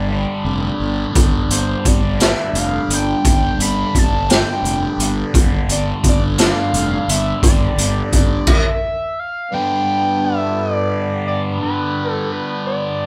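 Trippy and kaleidoscopic, this slow psychedelic rock passage in 6/8, cut from a longer piece, sounds like a band playing live together in one room. A screaming, sawtooth-edged synth lead carries the melody over a bright, double-tracked fuzz guitar riff with phaser, a round, punchy fuzz bass, and a reedy, breathing harmonium holding chords in the background. A gritty, boomy garage drum kit sits up front from 1.2 s, and the band stops briefly at 8.5 s before the synth, guitar and harmonium resume into a new section.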